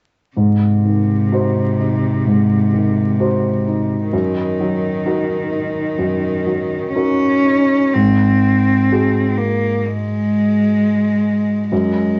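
A soft vinyl crackle and a dulled top end sit over a wet studio reverb, giving this short excerpt from a longer neoclassical piece for piano and strings a faded, intimate glow. At 64 BPM in 4/4 with a rubato feel, the music moves slowly and freely, steeped in longing and melancholy, and tuned to A4 = 441 Hz. A warm grand piano with a short sustain plays the accompaniment up front from 0.4 s, built on an Ab7 chord and then an Ebm/Gb. A single warm cello carries the second line, bowed sul tasto close to the listener, with a soft attack, an airy bow and light vibrato. A new passage begins at 7.9 s, returning to Ab7 as both instruments continue together until 12.2 s.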